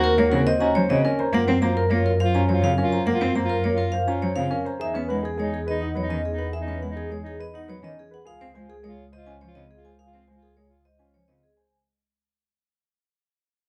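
In a straight 3/4 at 104 BPM, this minimalist classical pattern piece, cut from a longer work, feels urgent yet meditative as it moves through Ebm7, Gbmaj7, Emaj9 and Dbmaj7 and fades out across its 11.7 seconds. A metallic, ringing vibraphone struck with medium hard mallets carries the melody with a motor vibrato, over clear, worn piano arpeggios with long sustain and a smooth, punchy soprano saxophone playing a classical-style second line. Beneath them a single bowed cello adds rich, expressive accompaniment with portamento from 0.2 seconds, while a dark, woody, lush double bass section sits up front in a softly reverberant, dusky mix.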